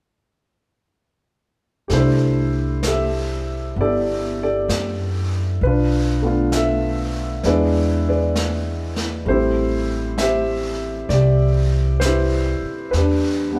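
A concert grand piano sits up front, its intimate, natural tone carrying deep bass and audible action noise as it supplies the accompaniment in this jazz ballad in C major. The piece moves at a slow 66 BPM in 4/4 with a gentle swing on the eighth notes, and its mood is romantic and intimate. From 1.9 seconds to 13.6 seconds, the piano, upright bass and brushed drum kit play together through a progression of C69, Bm7b5, E7, Am7 and Em7. The upright bass is also placed up front, plucked on steel strings with a woody, growly voice that is warm beneath the harmony. Further back, the acoustic drum kit uses brushes on a medium-tuned snare and hi-hat, sounding distant and roomy in a studio space. Light reverb wraps the band, which plays live in one room, and the passage is cut from a longer piece.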